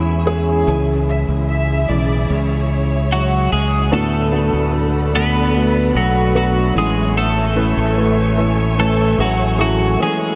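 A bright, twangy twelve-string electric guitar carries the melody over a dark, mellow grand piano, both shimmering with analog chorus, while a punchy fingered electric bass sits up front and a distant, lush bowed string section holds sustained chords in this emotional, longing pop ballad fragment, where the piano takes a solo from 0.7 to 3.9 s as a smooth violin section adds a second line and the harmony moves from C#m through D6 to Amaj7, the whole mix soaked in huge, dreamy reverb.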